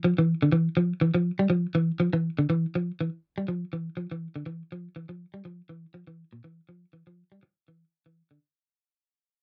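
Intense and defiant, this afrobeat fragment at 122 BPM in a swung 4/4 features a single warm, slightly broken-up electric guitar picking arpeggios up front with a vibrato effect, captured in a dry, close 1970s-style studio with light reverb and fading out across its full 8.4 seconds.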